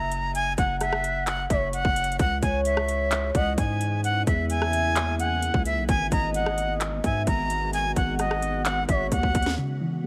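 Dusted with vinyl crackle, this brooding, menacing trap excerpt at 130 BPM in a half-time feel sets a breathy jazz flute melody, softened by a low-pass filter, over a deep sine 808-style bass and an overdriven trap kit with hard-clipped kick, sharp snare, metallic hats, handclaps and rim clicks. A gliding portamento lead with chorus and delay traces a second line, a moody ambient pad with built-in reverb enters in the background at 3.2 seconds, and a drum fill arrives at 9.1 seconds, by which point the harmony has moved from F#5 to C#m and G#m7. A soft round pluck closes the passage at 9.6 seconds.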